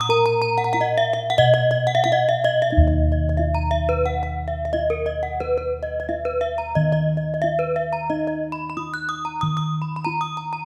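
A bronze metallophone and bossed gongs sound together from the very start of this shimmering, hypnotic Balinese gamelan fragment, cut from a longer piece and moving at 90 BPM in 4/4 with uneven beats in Eb pelog. Struck with a horn mallet, the close-miked metallophone rings out bright, dry and full in arpeggios, its paired tuning producing shimmering beats, while the gongs, played with padded beaters, carry a mellow, dark and round bass line. A reverberant recital hall surrounds the pair, and the music shifts into a new section at 2.7 seconds that runs through to the end.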